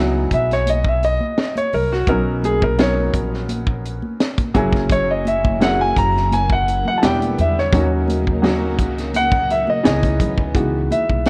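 A clear, intimate grand piano carries the melody up front, taking a solo through most of this introspective, soulful neo-soul excerpt, its long sustain and audible action noise giving it a natural, close presence. Set at 85 BPM in 4/4 with a slight sixteenth-note swing in C# dorian, it moves over chords such as C#m11, Bmaj9, F#7 and Em7 before settling back on C#m11. Beneath it, a woody upright piano with short sustain supplies vintage accompaniment, while a pizzicato upright bass on steel strings anchors the low end and a tight funk drum kit of hi-hat, kick and high-tuned snare sits up front in a small room. Soft-handed, thick-skinned congas add dry, high-tuned color in the background, and at 4.9 seconds a lush string machine arrives with mellow, sub-octave sawtooth chords, slow attack, ensemble chorus and a moving notch. Light reverb and small room ambience surround the band, and a worn cassette-tape character lends a warbly pitch drift to the whole recording.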